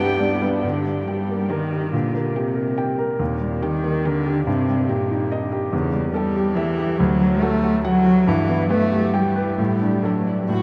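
Piano, violin, viola and cello sound together from the start in this quick, graceful classical-period movement for piano quartet in 3/4 at 141 BPM, a cheerful, rubato excerpt cut from a longer piece that moves from G minor to D major at 5.7 s, with the up-front, focused cello carrying the second line under a distant, woody violin melody played very quietly, while the clear, vintage-toned grand piano and a smooth, even viola, also very quiet and distant, fill in the accompaniment, all set in a vast, echoing space with a huge, wet ambient reverb.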